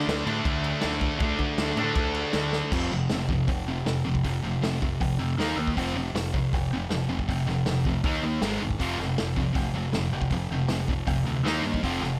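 A straight 4/4 beat at 158 BPM drives this rowdy, swaggering garage rock excerpt in F mixolydian, cut from a longer piece. A thick, double-tracked fuzz guitar sits up front with a bright, distorted riff moving through power chords from D5 to F5, Eb5 and Ab5, over a growling overdriven picked bass. A natural-sounding vintage kit with punchy kick, medium-tuned snare, hi-hat and crash plays a fill at 2.5 seconds that launches the next section at 2.7 seconds, all set in light reverb and small-room ambience.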